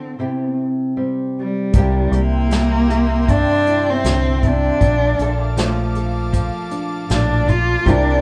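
Nostalgic and hopeful, this acoustic folk-pop ballad fragment opens with an expressive bowed cello melody, rich with vibrato and portamento, over a woody, fingerpicked nylon-string guitar with old strings, moving from C to C7. At 1.7 seconds a round, punchy fingered electric bass and a soft brush drum kit with a tight kick and a natural studio-room sound enter, and from 1.8 seconds an airy, breathy pad with a slow attack and chorus sustains chords quietly beneath as the harmony settles on Bbmaj7. The band plays live together in a large studio, and the moderate reverb gives the whole performance a gentle, spacious glow.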